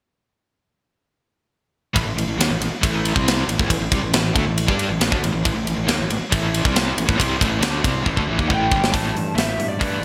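Hard rock at 138 BPM in A minor, aggressive and menacing, where a bright cranked stack guitar and a hollow-bodied semi-hollow guitar with tremolo sit in the background playing an overdriven riff over growly, punchy fuzz bass and an up-front tight metal drum kit with a medium-tuned snare, bright cymbals and gated reverb, while a drum fill at 8.1 seconds and a dark, lo-fi lead guitar melody entering at 8.5 seconds carry the music into the next section, all in a bright 1980s-style digital production with plate reverb.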